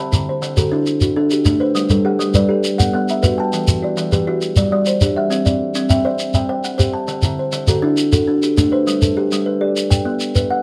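A rippling 12/8 cycle at 135 BPM, felt in dotted quarters, drives this warm stretch of southern African traditional music in G major, cut from a longer piece. Two kalimbas weave interlocking mbira-style arpeggios: the up-front one has a woody, hollow-box ring and a vintage, band-limited thumbnail pluck, while the mid-forward second, on a solid board, sounds mellow, soft and short under the fingertip and stops at 9.2 s. A grainy, close and dry shekere sits up front in a moderate studio room, as the harmony moves through D, G, Bm, Em and C before a brief closing turn to G and Bm from 8.9 s.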